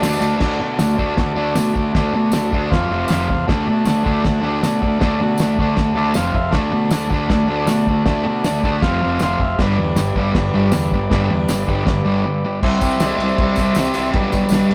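Garage rock with a raw, swaggering mood, this excerpt from a longer piece drives along in a straight 4/4 groove. A fuzzed, distorted guitar riff sits up front, picked and double-tracked with a compressed punch, while the fingered electric bass growls underneath with its own overdriven fuzz. A cloth-damped drum kit gives a dry, thuddy pulse of fat snare, tight kick and dark crash and ride cymbals, and a jingly tambourine adds bright, close shimmer on top. A vintage, reedy combo organ holds clean sustained chords above the band, slipping in short fills around 5.8 and 9.0 seconds. The harmony moves mostly between D and F5 before turning to G, and after a brief break at 12.2 seconds a new section begins at 12.6 seconds on C, heading to G/B. The whole thing has the rough feel of a rehearsal-room recording, with tube saturation and a light touch of reverb.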